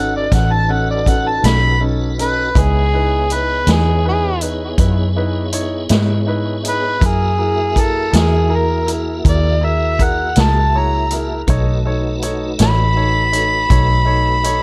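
An overdriven, gritty harmonica with tape echo, light vibrato, tongue slaps and scooped notes carries the jazz-style melody up front in this laid-back, rollicking slow blues excerpt at 54 BPM in 12/8, over a clear baby grand piano, a piping tonewheel organ through a slow rotary speaker with chorus vibrato, a dark, round, foam-muted electric bass, and a vintage drum kit of hi-hat, punchy kick and snare that enters at 0.3 s, all in a light reverb as the chords move from B7 to C#m7, F#7 and back to B7.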